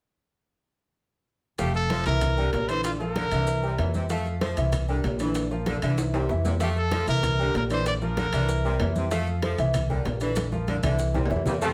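A straight 4/4 salsa groove at 192 BPM drives this joyful, sunny passage cut from a longer piece. Congas, bongos and cowbell, ringing metal-shell timbales with agogo bells, and grainy maracas make up the percussion beneath an upright bass that sits up front with a woody, thumpy pizzicato tone. From 1.6 seconds a vintage upright piano with long sustain plays the accompaniment over a cycling F, C7 and Bb progression, while a punchy saxophone section with vibrato carries a low second line. A brilliant trumpet takes the melody in two short phrases, the second beginning at 6.6 seconds. Drum fills arrive at 6.0 and 10.4 seconds, and at 11.5 seconds a tight trombone section with a smooth top joins in the closing moment. The band is heard from further back in a studio with wet reverb.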